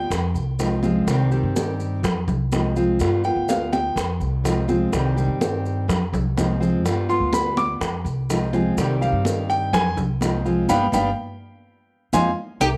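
A clear concert grand piano leads this nostalgic Cuban son and guajira excerpt, taking a solo of short-sustained arpeggios high in its range that come and go in brief bursts over a steady 125 BPM in 4/4. A dark, full-bodied fingerpicked steel-string guitar sits up front, carrying the accompaniment with audible finger squeak. A woody, thumpy upright bass with gut strings holds the low end, also up front, under a minor-key cycle that keeps returning through F minor, C minor and G7. Percussion fills the background: tight, high-tuned bongos and cowbell played with hard hands and grainy, mellow maracas, both sounding distant, along with ringing congas with a vintage, band-limited tone. The band hits an accent from 10.7 seconds, and at 12.6 seconds a bright, metallic Cuban tres and a fingerpicked flamenco guitar sound a single brief note each. The guitars, piano and tres carry the cassette-tape character of a home recording, set in moderate studio reverb.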